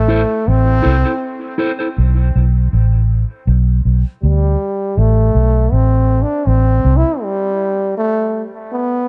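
Reggae with a hypnotic, deep mood, cut from a longer piece: a punchy, lightly vibrato trombone carries the melody up front with dub echo, over a round, foam-muted, dark vintage electric bass that plays until 7.0 seconds, while a mellow clean guitar with harmonic tremolo and dub echo touches in only at the very start before a stop at 8.0 seconds, all in a light reverb.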